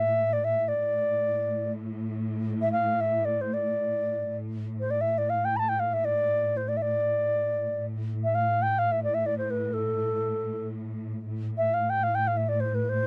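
Dry and close with a 1970s studio character, this excerpt from a longer Turkish makam ensemble piece sets an airy, reedy alto flute melody with a soft attack and straight tone over a lush, bowed cello section drone rich in vibrato, both up front though the cellos sit lower in the mix, creating a longing, hypnotic mood.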